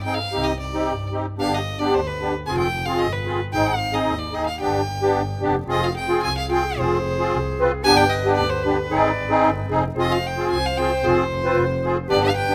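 A rough home demo with light reverb frames this soulful, festive klezmer fragment at 112 BPM in 2/4, tuned to A4 = 444 Hz and moving through Cm, G, Fm and Ab. A bright, earthy violin carries the melody with light vibrato and an airy bow, while a reedy, shimmering musette accordion sits up front in a boxy small-room sound, and a dark, close double bass bowed sul tasto lays a soft-attack foundation. At 5.7 s a clear clarinet with a smooth top enters in a classical style to add a second line through the close.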